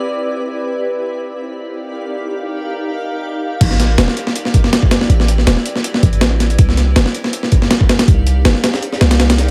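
A dry, raw and dark drum and bass excerpt at 161 BPM with a jungle swing, opening on a blurred, evolving granular cloud pad whose built-in reverb carries sustained chords from Cmaj9 to D#maj9. At 3.6 seconds the drop lands as a gritty, overdriven breakbeat kit with a thumpy kick, medium-tuned snare, hi-hat and crash, sounding compressed and re-recorded in a small room. A deep, boomy 808-style sine bass with a noise layer enters alongside it, both up front, while the pad moves through Am11 and Cm11 until the cut at 9.5 seconds.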